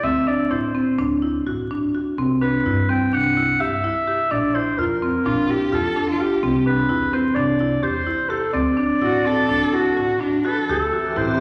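Bathed in a wet recital-hall reverb with a faint vinyl crackle, this playful, hopeful excerpt of contemporary chamber music in 9/8 at 254 BPM (eighths) in D mixolydian sets a distant, classical-style clarinet melody over woody marimba arpeggios and a pizzicato upright bass, with a dark, bowed cello adding an expressive second line full of vibrato and portamento from 5.2 s and an icy, crystalline glass pad with chorus arriving on sustained chords at 10.9 s.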